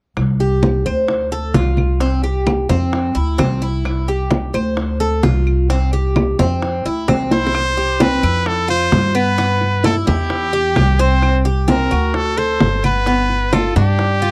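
A brilliant, punchy solo trumpet with vibrato takes the spotlight at 7.3 seconds, playing a forceful pop-style melody up front in this sunny, danceable Cuban son and guajira passage, cut from a longer piece, at 130 BPM in C major. Before it arrives, the bright, metallic Cuban tres carries the opening with picked arpeggios on its double strings, some doubled at the octave, sitting up front over chords that move between C, Dm7 and F. A drum fill at 7.3 seconds leads into the second section, where the harmony opens out through Cmaj7, G6, Em and D7 before settling on G7. Underneath, a dark, thumpy pizzicato upright bass with gut strings stands close, joined by low-tuned, round bongos played with soft hands in a live room, while warm, thick-skinned congas struck with hard hands sit further back. Woody claves tick quietly in the background, and the whole recording has the dry, close sound of a 1970s studio with little reverb.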